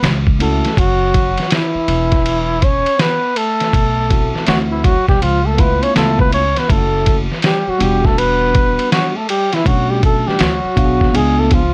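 Jazz-hop at 81 BPM with a swung sixteenth feel, this nocturnal, smoky excerpt sets a mellow, breathy flugelhorn melody with vibrato and scooped notes up front over a whispered, soft-attack trombone second line in the background. Beneath them, a muffled, pitched-down sampler-style drum kit with a thumpy kick and compressed, tape-warm sound sits forward, while a woody, growly pizzicato upright bass anchors the bottom. A worn, slightly out-of-tune tine electric piano with phaser enters at 0.4 seconds, accompanying through jazzy changes such as D9, C#7alt and Em9 in a dark production with light reverb.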